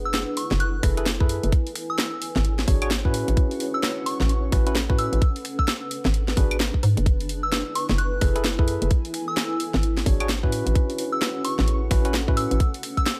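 A hollow, knocking FM bass and a cloudy, evolving granular pad with sidechain pumping open this moody, soulful two-step garage cut at 130 BPM, joined almost at once by a soft, pure synth bell melody with chorus and digital delay alongside a layered garage kit of claves, finger snaps, hi-hat and a cracking snare, all riding a 61% swing. From 0.8 seconds a tight, up-front electronic kick and bright, clean tine electric piano stabs with delay arrive. The harmony cycles through F#m11, E13, A69 and G#m7b5, set in a digital ambience.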